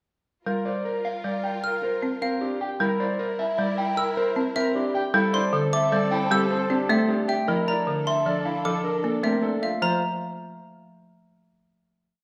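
At 0.5 s, a dark, slightly broken-up electric guitar takes the melody up front, fingered in a repeated short cell, while a woody folk marimba struck with hard mallets lays down a dry, rustic accompaniment beside it. Alongside them, a polished grand piano turns over its own looping arpeggio figure, and a lush studio string section holds sustained chords, bowed with vibrato and portamento in swelling held notes. At 1.6 s, a sharp xylophone with wooden mallets joins high above with percussive arpeggiated cells. This minimalist classical pattern music in a straight 6/4 feels meditative yet urgent, moving through Gm7, C7, Am7 and Bbmaj9 before settling on a closing Fsus4 chord. A wet recital hall reverb surrounds the whole piece.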